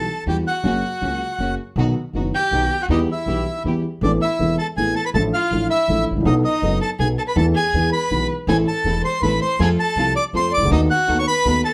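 A passionate, sultry tango in 3/4 at 161 BPM with a rubato feel, this excerpt cut from a longer piece opens in E harmonic minor before shifting to A harmonic minor at 4.0 seconds. A reedy, dark bandoneon sits up front carrying the melody, while a single bowed violin with vibrato and portamento adds an expressive second line beneath it. A mellow, slightly detuned upright piano, woody and with long sustain, also sits up front with the accompaniment, and a pizzicato upright bass on gut strings supplies a thumpy low end. In the background, a symphonic string section with light vibrato and a biting, intense edge plays stabs through the opening until 3.8 seconds and returns at 8.5 seconds. The harmony moves through colorful chords such as Emadd9, Amadd9 and B7, all set in a moderate studio reverb.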